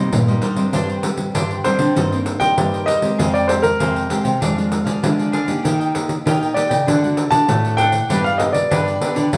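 Heard in a reverberant large studio room where the band plays live together, this yearning, nostalgic samba-choro fragment moves at 98 BPM in a straight 4/4. An up-front, natural-toned baby grand piano carries the melody over crisp picked cavaquinho, classical fingerpicked nylon-string guitar and a thumb-plucked nylon-string bass guitar, while a jingly pandeiro played with soft hands enters at 0.1 s, all moving through a Cm7, Fmadd9, Eb, D to G progression.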